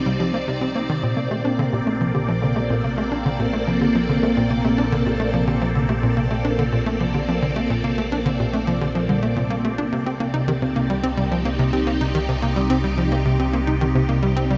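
Ambient, sequencer-driven space music in a straight 4/4 at 108 BPM, this hypnotic, expansive passage is cut from a longer piece. A swirling, vintage string machine sits up front with sustained chords, its bright sawtooth tone treated with ensemble chorus and phaser, moving from Cmadd9 to Bbmaj7 at 1.0 seconds and back to Cmadd9 at 9.9 seconds. Beneath it, a tight, punchy sequencer bass drives a riff with a fast-attack filter pluck, colored by subtle chorus and delay. A soft, round pluck plays gentle arpeggios in the background, dark and full-bodied, with chorus and delay. A deep sine sub bass fades in across the whole passage, holding down the low end, and a huge, wet reverb with a 7.8-second tail surrounds the mix.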